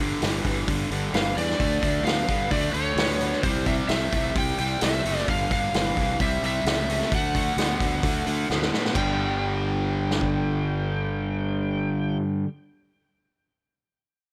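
A cranked, double-tracked stack guitar opens this swaggering blues rock and southern rock excerpt with a picked, overdriven riff in G mixolydian, while a growly, fuzz-driven fingered electric bass sounds from the first moment. A vintage acoustic drum kit enters almost at once, setting a driving 130 BPM in straight 4/4 as the chords move through G5, D5, C and D. An overdriven slide guitar, played with fingerpicks, soon carries a bright melody in a high register. The drums sound saturated and gritty, with dark cymbals, a punchy kick and a rolled-off top. A drum fill at 8.5 seconds leads into a new section at 9.0 seconds, and the dry mix keeps the stack guitar and kit up front, close to the ear.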